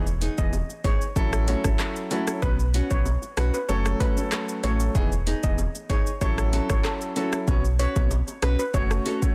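A bright, shimmering steel pan carries the melody through tape echo, floating over a sunny, bouncy dancehall groove built on an up-front electronic drum kit with a deep kick, metallic hi-hats, handclaps, rim clicks and shaker, plus a full, deep sub bass with octave. A warm, open baby grand piano with long sustain provides chordal accompaniment while a small, fingerpicked nylon-string guitar adds arpeggios and very quiet, high-tuned bongos, played with soft hands, sit underneath. The short excerpt cycles through lush major-seventh and sixth harmonies in a small room, finished with a dense, heavily limited modern master, and the sub bass drops out at 9.0 seconds.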